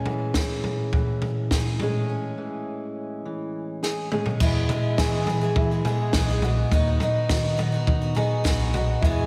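A compact cocktail drum kit sits up front in this nostalgic indie folk excerpt, with a punchy kick, a high-tuned snare, dark cymbals and toms in a tight booth, plus a fill leading out of a break. At a straight 104 BPM in 4/4 and E major, a fingerpicked steel-string acoustic guitar with an auditorium body and slapback echo opens over Amaj7 and plays until 6.7 seconds. At 4.4 seconds the arrangement builds as the harmony moves to E: a bright, jumbo twelve-string acoustic guitar enters, picked and shimmering with octave doubling, full body, audible finger squeak and slapback echo. It arrives alongside a round, dark fingered electric bass with a direct, amped tone and a mellow upright piano playing arpeggios, woody and boxy with audible action noise, long sustain, and tape and slapback echo. The chords then shift to B/D#, and a lush hall reverb gives the whole piece a big arena sound with a warm, wistful glow.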